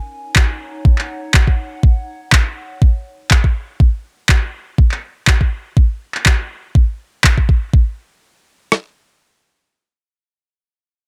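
A dry, up-front mix opens this raw, gritty acid house fragment, cut from a longer piece. A dark, nostalgic pad of square and triangle tones, with slow attack, chorus, its own reverb and sidechain pumping, warbles over an Ebm7 chord before fading out by 3.8 seconds, while a clean 12-bit drum machine pushes a thumpy, overdriven kick and rim click with a light sixteenth-note swing. Tape-tinged electronic handclaps, re-recorded in a small room, sit up front beside the drums until 7.3 seconds, and the drum machine carries on alone to 8.8 seconds.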